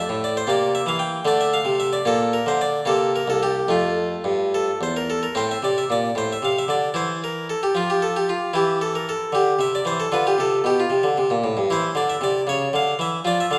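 A bright, plucked solo harpsichord with one set of strings and a Flemish-style voice sits up front in a reverberant recital hall, playing a flowing, solemn baroque-style suite movement in 6/8 at 76 beats per minute with rubato, ranging from C2 to G5 through chords such as C7, Bb, Gmadd11/C and Amadd11, with a new section arriving at 5.4 seconds in this brief cut from a longer piece.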